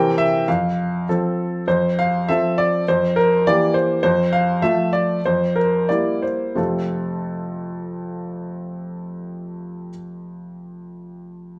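A clear baby grand piano opens this playful, graceful classical-period sonatina, playing alone from the first moment to its close at 11.6 seconds. In F major and 2/4, the tempo moves between 83 and 105 BPM with a rubato feel, and the instrument is tuned slightly above standard pitch at A4 = 441 Hz. The harmony alternates between F and Bb69/F, and the playing slows down between 3.4 and 6.6 seconds before settling back on F as a new section begins. The piano sits up front with an intimate, natural character, long sustain and audible action noise, spanning F2 to G5. A moderate large-studio reverb adds space around it, a faint mains hum lies underneath, and the passage is cut from a longer piece.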